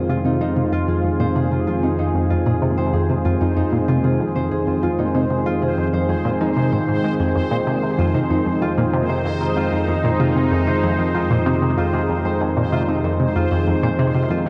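Mysterious and hypnotic, this ambient, sequencer-driven space music moves at 95 BPM in a straight 4/4, resting on a single Fm7 chord in F minor throughout this 14.5-second excerpt. A tight, driving sequenced synth riff sits loudest in the mix, its detuned sawtooth and triangle tones shaped by a fast filter pluck and coloured with chorus, phaser and tape echo, running from F2 to Ab3 from 0.1 seconds onward. Up front, a sweeping resonant pad holds sustained chords between Eb3 and Ab4, its detuned sawtooth sound evolving through a slow filter swell with chorus. A concert harp plays thumb-plucked, ringing arpeggios from Eb4 to C5, trailed by tape echo, while a round sine sub bass anchors the low end on F2. High above, a bubbling stepped-filter texture on C5 drifts through random resonant filter steps, with chorus, built-in reverb and a long release, all set in a lush hall reverb within a dark production.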